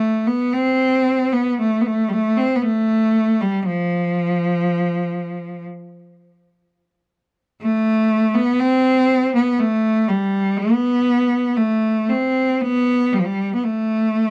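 A single bowed cello opens the recording and carries it alone for its full 14.3 seconds, playing a slow, rubato Celtic folk line in A minor at roughly 56-62 BPM in 4/4. The mood is longing and haunting, with the tune moving freely rather than to a strict pulse. The cello's tone is rich and intense, with a smooth top and vibrato, and it stays in a low-middle register between F3 and C4. Placed up front, the one player sounds close. The dry, close recording has the character of a 1970s studio, giving this short cut from a longer piece a plain, unadorned presence.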